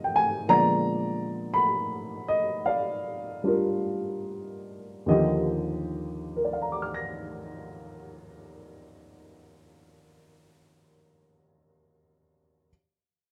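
A dark upright piano plays alone throughout this short cut from a longer jazz ballad, its woody, mellow tone sitting up front with a short sustain. The mood is tender and romantic, in Eb major and 4/4, with a slow tempo between 47 and 59 BPM and a gentle swing on the eighth notes. The opening passage slows down over its first 5.1 seconds, leaning on a Bb7b9 chord before settling onto Ebmaj9 as the second section begins. The piano ranges from Eb2 up to Bb6, covering deep bass notes and high, delicate tones. A moderate large-studio reverb gives the natural sound a sense of space around it.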